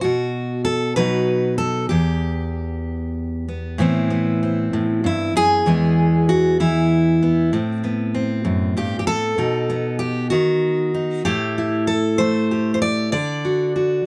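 Folk fingerstyle in a straight 6/8, this wistful, melancholic excerpt features a solo fingerpicked steel-string jumbo acoustic guitar, bright and full-bodied and placed up front by close, detailed microphones with light reverb, drifting from an opening on B and Em into a second passage at 3.8 seconds that moves through Amadd9, E, B and A5 before settling on D.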